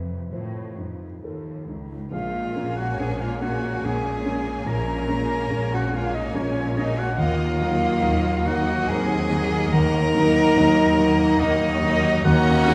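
Heard from further back in a wet recital hall with a 1.8-second reverb, this moving, sorrowful passage, cut from a longer orchestral film score, unfolds in rubato at 71 BPM in 3/4 and Bb minor. A natural, warm baby grand piano opens with accompaniment over a lush, bowed studio cello section holding the bass. At 2.1 seconds much of the orchestra joins. A solo cello carries the smooth, close melody with rich vibrato, and from 2.6 seconds a focused violin section also plays a melody high above in the background. A clear solo oboe and an airy small flute group with a crisp attack share a second line, joined at 2.5 seconds by a soft-attacked, expressive violin section, while a French horn section in classical style sustains chords with light vibrato. An even double bass section anchors the low end, and from 2.6 seconds a very quiet viola section fills the middle as the harmony passes from F7 to Bbm7, arriving on Ebmadd9 at 7.2 seconds.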